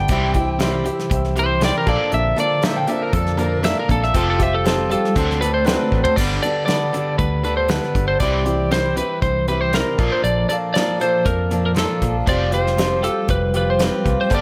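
Light reverb and a small-room ambience give this short section of a longer folk rock and heartland rock piece a close, hopeful, jangly feel at a straight 118 BPM in 4/4. Up front, a twangy, slightly broken-up, compressed lead electric guitar plays a solo through the opening stretch. A boxy, picked swing-style acoustic guitar and a double-tracked, biting overdriven guitar riff with harmonic tremolo fill out the accompaniment. A dark, round, foam-muted vintage electric bass and a soft brush drum kit with a fat snare and tight kick anchor the groove. A woody upright piano with long sustain sits in the background for the first six seconds, and a fingerpicked overdriven slide guitar adds a brief second line at 2.6 seconds. A drum fill at 5.9 seconds leads into a new section. The harmony moves through C, Bbmaj7, Fsus2 and D7, shifts to Gadd9 at the section change, and then cycles back through C, Bbmaj7 and Fsus2.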